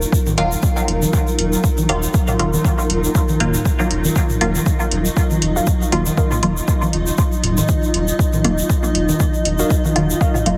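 Heavily compressed into a radio-like squash with light digital ambience, this hazy, hypnotic dub techno excerpt rides on an overdriven, punchy kick, metallic hi-hats, a grainy tube shaker and background electronic toms and congas with dub echo, while a round, soft sub bass and a blurred granular cloud pad sit beneath a muted, detuned chord stab with phaser and a filter sweep running throughout, those three pumping to the sidechain, and a lo-fi, warbling pluck drifts in at 5.6 seconds and again at 9.6 seconds.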